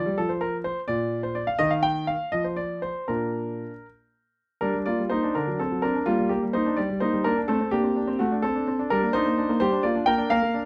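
A clear, up-front concert grand piano plays alone in this graceful, playful classical-period sonatina excerpt, moving in a rubato 6/8 at about 77-87 BPM in dotted quarters, tuned to A4 = 437 Hz. It settles in Bb major, then at 4.6 s turns to G minor, with harmonies passing through D7 and returning to G minor, across a range from Bb2 to G5. The close, detailed recording and light reverb bring out the instrument's deep bass and smooth, vintage tone.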